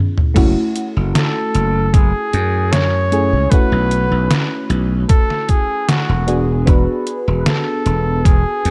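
Over an opening FM electric piano, a detuned 8-bit drum machine plays a brief fill from 0.2 seconds before an overdriven, thumpy electronic kick and growly, punchy slap bass enter at 0.4 seconds, setting a straight 4/4 vaporwave groove at 76 BPM that moves through F#m9, B9sus4 and E9. A soft, round FM electric piano carries the accompaniment, colored by phaser, lush chorus, analog delay and gritty 12-bit sampler texture. A clear flugelhorn with vibrato and tape echo takes the melody from 1.2 seconds, giving this nostalgic, faded fragment a dry, up-front sound.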